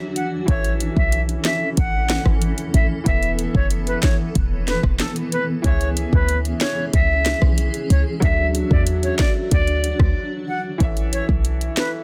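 A dense, heavily limited modern master in a digital ambience gives this bouncy, sunny dancehall excerpt its polished sheen, moving at 93 BPM in a straight 4/4 in A major. Up front, an electronic afro-pop drum kit sets a deep kick against a sharp snare, metallic hi-hats, handclaps and rim clicks. A short 808-style bass sits just as prominently, punchy and tight with a sine body, a noise layer and a fast, decaying attack. Underneath, a clear, slightly worn grand piano and a cloudy, blurred granular pad with its own reverb share the accompaniment, both pulsing with sidechain pumping as the chords move from A to Esus4, C#m and Dadd9. A distant, airy metal jazz flute carries the tongued melody with vibrato, trailed by tape echo. After a short break at 10.2 seconds the pad drops out at 10.8 seconds and a new section returns to A until the piano stops at 12.0 seconds.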